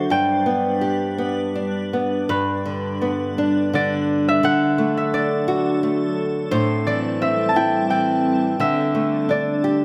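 A wet recital-hall reverb with a 1.5-second decay surrounds this sleepy, gentle children's lullaby, cut from a longer piece and set in a swaying triple metre with a loose, rubato feel. Up front, a ringing, fingerpicked concert harp carries the melody while a small-sounding nylon-string guitar fingerpicks the accompaniment, with finger squeaks, both playing throughout. Alongside them an icy, crystalline glass pad holds airy, slow-blooming chords treated with chorus, tremolo and its own reverb, moving from G through D and Am7 to a closing Dsus4.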